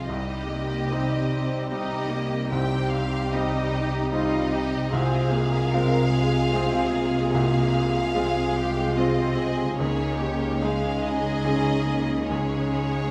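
This bittersweet, longing cinematic passage in F minor is cut from a longer piece, and the full ensemble sounds together from the first moment in a rubato 3/4 at 74 BPM. Lush, focused violins carry the melody up high over a second violin line that is close and even, both bowed with vibrato. Underneath, violas and a tight, classical-style French horn section hold the harmony in the background. A clear baby grand piano with short sustain plays accompaniment, and a very quiet, thumb-plucked concert harp adds ringing arpeggios. Rich cellos and double basses anchor the low end, the basses bowed with soft attack and expressive portamento. The chords move from Cm to Fm/C at 4.9 seconds and arrive on Dbsus2 at 9.8 seconds, with a wet scoring-stage reverb surrounding the ensemble.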